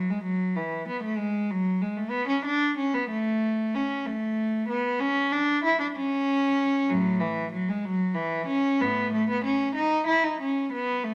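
A close, up-front solo cello rings out in a wet stone room, its reedy gut-string tone carrying a light vibrato in period style. This baroque-style suite movement for unaccompanied cello moves in a rubato 12/8 lilt, radiant and dance-like, as one bowed player ranges from A2 up to E4. The passage, cut from a longer piece, runs for 11.1 seconds.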